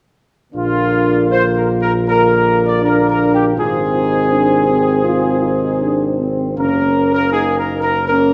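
A trumpet section carries the melody up front, its warm tone shaped by light vibrato and a soft attack, entering at 0.6 seconds in a solemn, triumphant classical brass passage in a straight 4/4. Beneath it, a tight French horn section holds mellow, smooth-topped chords, a vintage-sounding trombone section sustains chords in the background, and a distant, roomy tuba anchors the bass from 0.5 seconds as the harmony moves from Bb to Ab to Gb. This passage, cut from a longer piece and running to 8.3 seconds, sits in a wet scoring-stage reverb.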